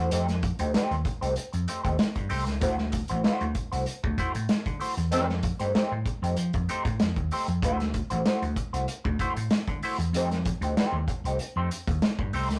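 A growly, amped vintage slap bass sits up front in this playful funk excerpt at 96 BPM in a straight 4/4, running from the start to 12.6 seconds. Beside it, a clean, fingered semi-hollow electric guitar with a hollow-body tone and wah provides the accompaniment. A vintage acoustic drum kit with a punchy kick, a medium-tuned snare, hi-hat and a rolled-off top pumps in its small room. At 5.1 seconds a horn section adds a brief, smooth-topped pop-style accent with light vibrato, marking a band hit that runs to 7.6 seconds. The harmony shifts between F9 and D9 throughout. The whole take has a rough rehearsal-room character, with warm saturation and a moderate small-room reverb.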